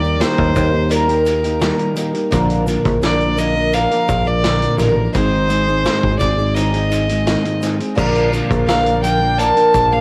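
Folk rock with a heartland rock lean, this nostalgic cut from a longer piece moves at 85 BPM in a straight 4/4 over Eb, Bb and Ab chords, with a smooth, richly bowed fiddle carrying the melody up front through plate reverb and tape echo. Beneath it, a shimmering, octave-doubled twelve-string acoustic guitar picks accompaniment through analog chorus, a dark, clean electric guitar plays a fingered riff, and a growly picked electric bass anchors the low end. A gritty vintage drum kit with dark cymbals and a punchy kick joins at 0.2 seconds, a grainy egg shaker sits very quietly in the mix, and a reedy, sweet accordion enters at 8.0 seconds with sustained chords in the background, all captured as a home cassette recording with light reverb.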